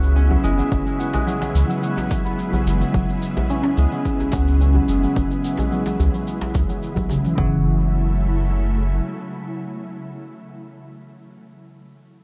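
Light digital ambience frames this meditative, hypnotic organic downtempo piece at 108 BPM in F# minor, where a fingerpicked, ringing concert harp plays tape-echoed arpeggios up front under a filter sweep, a round sine sub bass and a detuned, chorused, ethereal pad both pulse with sidechain pumping, and a gritty shaker, cracking close djembe and overdriven deep house kit with punchy kick and toms carry the groove until around 7.4 s, when the harmony moves from C#m7/F# to F#m7.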